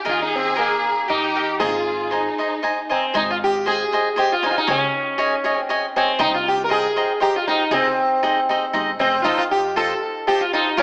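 A three-beat metre with a straight feel carries this romantic, festive snippet of Mexican folk in a mariachi vein, cut from a longer piece. The sitar takes the melody in its lower-middle range, its plectrum-plucked tone round and shimmering with buzzing sympathetic strings and an analog delay trailing each note. A bright, crisp cavaquinho picks the accompaniment up front, while a woody, dark upright bass thumps pizzicato on gut strings far beneath in the mix. A lush, bowed violin section adds an expressive second line with vibrato for the opening moments only, falling away at 2.9 seconds, just before the music moves into a new section at 3.1 seconds. The harmony drifts from suspended colors through Cm7 and Ab/C toward a closing F7, all heard through a moderate recital hall reverb and an AM radio sound.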